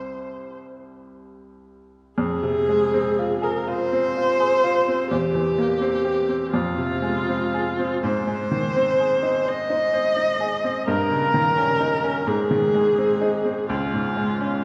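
Heard from far back in a wet concert hall with a 2.3-second reverb tail, this melancholic, elegiac romantic classical excerpt in F minor moves at a slow, rubato 42 BPM in 6/8, with a single dark, woody viola singing the bowed melody with vibrato over a bright, slightly worn baby grand piano whose short-sustained accompaniment carries the harmony from C through F minor toward A-flat and D-flat across 14.6 seconds.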